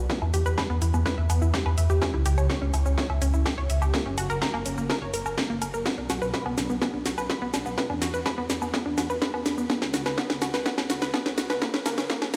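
A lush, detuned sawtooth pluck spins arpeggios over a rumbling, tube-saturated saw bass, both pumping against the sidechain, with echoes trailing the pluck, as this dramatic, melancholic melodic techno fragment moves through Em, C#dim, F#, Bm, E5 and C#7sus4 before landing back on F#. A punchy, high-passed electronic kick and an up-front kit of cracking snare, metallic hats, shaker and woodblock join at 0.1 seconds. The whole 12.4-second stretch is one long build-up, carried by a continuous drum fill and filter sweep and bathed in a huge ambient reverb that sounds like a big system in a bare room.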